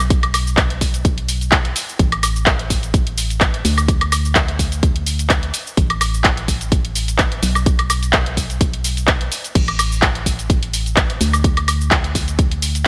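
A hollow, organ-like FM bass opens this bittersweet, soulful piano house excerpt at 127 BPM, its dark, percussive notes pumping against the sidechain alongside a house drum kit of bright hats, handclaps, shaker, woodblock and crash cymbal. A punchy electronic kick arrives at 0.1 seconds, sitting up front with the layered kit in studio reverb, while the 16ths carry a light 54% swing. Digital ambience surrounds this single section, which is cut from a longer piece.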